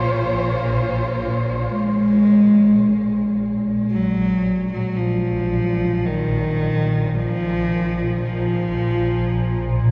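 A dark, woody solo cello leads this ominous dark ambient drone excerpt in Bb minor and free time, singing a close, vibrato-laden melody between Eb3 and Ab3 through shimmer reverb and delay, while a lush bowed cello section holds a Bbm chord until 1.7 s and a barely audible bubbling, resonant sawtooth texture flickers beneath; a swarming, detuned granular synth drone, present from the start, swells in a fade-in from 1.7 s as the harmony moves to Bb5, the whole piece sunk in a cavernous 8.1-second reverb and the warbling pitch drift of worn cassette tape.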